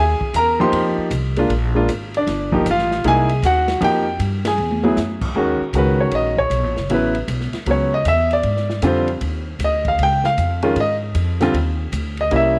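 A swung 4/4 at 155 BPM drives this smoky, moody jazz piano trio, with an open drum kit of dark cymbals, a medium-tuned snare and a boomy kick sitting low and smooth behind a woody, growly upright bass plucked on steel strings up front. The baby grand carries the melody with a natural, short-sustained tone over shifting extended harmony such as Emaj7#11, C7alt and Fm11, all in a light reverb. After a band accent at 4.4 seconds and a drum fill at 4.6 seconds, the piano takes a solo from 5.4 seconds through the end of this cut from a longer piece.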